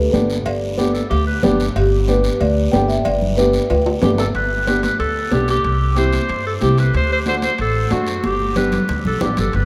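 Sunny and danceable, this cumbia excerpt in G major moves at 185 BPM in a vast, echoing space, with a boxy-sounding marimba carrying the melody until 4.2 s over a woody pizzicato upright bass up front, a dark, mellow upright piano, high-tuned congas and ringing cowbell and timbales in the background, and a raspy guiro, while a bright, punchy vintage clarinet with light vibrato steps forward for a forceful jazz-style solo from 4.3 s as the chords move from G through C and D back to G, with drum fills marking each section's close.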